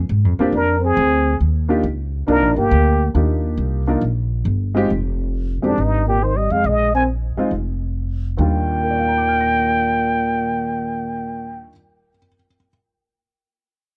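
Warm and sophisticated, this excerpt from a longer piece is small-group swing and bop in Eb major at 137 BPM, with a firm swing on the eighth notes. An up-front upright bass opens at 0.0 seconds, plucked and woody, and the baby grand piano joins at 0.4 seconds, intimate and natural with short sustain and audible action noise. A growling trombone enters at 0.5 seconds with a raspy, gritty second line and a soft attack, while the trumpet with plunger mute leads the melody from 0.6 seconds, its wah-wah tone breathy and scooped, shaded with vibrato. The harmony moves from a rootless Bb9 through Ebmaj9, Fm9 and Bb7 before settling back on Ebmaj9, and the piano rings on alone after the other parts stop at 11.7 seconds. The sound is a dry, close studio recording in the 1970s style, set in a small room.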